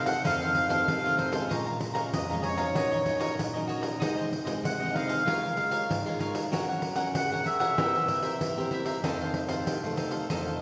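Heard through the long, wet reverb of a church or concert hall and marked by lossy compression artefacts, this bittersweet, nostalgic fragment of samba and choro rests on a crisp, picked cavaquinho and a classical, fingerpicked nylon-string guitar. A jingly pandeiro sits up front from 0.1 seconds. The reedy, airy accordion, slowly beating and close at hand, carries the melody and takes a solo from 1.5 seconds as the chords move from F7 through Bbm7, Db6 and Gb before returning to F7.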